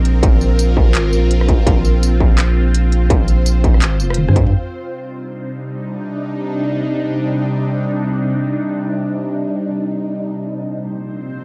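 A dark, tense half-time drum and bass passage, cut from a longer piece, opens straight into a drop: a string-like drone of detuned sawtooth voices in unison holds sustained chords over a deep, thick sub bass with tube saturation and a fast attack. An industrial drum kit of handclaps, hi-hat, rim click, tambourine and toms sits low in the mix with smooth, filtered hats, while a distorted electronic kick joins up front just after, giving the swung groove a heavy, gritty weight. The kit and kick carry a hissy cassette character, and a short drum fill closes the opening drop. At 4.5 seconds the drums and bass stop, leaving the drone alone until 11.4 seconds, its slow attack, long release, vibrato, noise layer, phaser and built-in reverb suspended under a tape-worn, pumping haze. The whole has the intimate, lo-fi feel of a home recording on cassette with light reverb.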